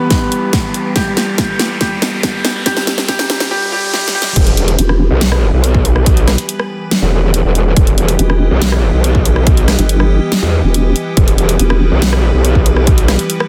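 A half-time dubstep groove drives this aggressive, menacing cut, opening with a build-up where a brilliant baby grand piano melody with digital delay rings over an evolving, detuned wavetable pad with sampler grit and sidechain pumping, a rising electronic riser, a filter sweep and drum fills. At 4.4 seconds the drop hits: an up-front growl bass, saturated and overdriven, churns low while a nasal, resonant vowel-sweep wobble bass cuts in from 4.8 seconds and again from 8.2 seconds. A punchy, tape-warm electronic kick and a dubstep kit with a huge snare, rim clicks, hi-hat and crash pound beneath it all, in a dense, heavily limited modern mix with light digital ambience.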